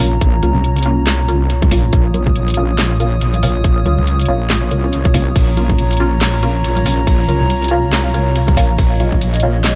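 Heavy and meditative, this deep dubstep excerpt rolls at a half-time swing, built on a saturated, detuned wobble bass sitting up front with chorus, under a tight electronic kick that enters at 0.2 seconds. A garage drum kit adds a cracking snare, handclaps, hi-hat and ride cymbal, while very quiet congas with soft hands and a thin skin sit close and dry. Muted, filtered dub chord stabs drenched in phaser, lush chorus and dub echo float over a moody, ring-modulated analog pad holding a single minor chord, all within an echo-heavy mix of light reverb and digital ambience.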